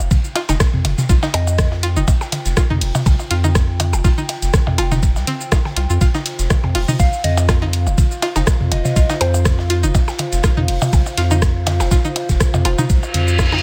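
Sparse and hypnotic, this minimal techno excerpt runs at 122 BPM with a light swing, built on an up-front knocking electronic kick, a round, deep analog bass that pumps against it, a dry overdriven analog drum machine playing cabasa, hi-hat and rim click, tape-toned electronic blips and toms with delay, and a gritty acoustic garage kit of hi-hat, ride and snare sitting in the background in a bright stone room, while a twangy, string-like resonator pluck repeats a riff through chorus and digital delay over a warbling, nostalgic, lo-fi pad, a soft, pure FM bell drifts in briefly at 1.3 seconds and again from 7.0 seconds, and a reverse cymbal rises at 13.0 seconds as the cut ends.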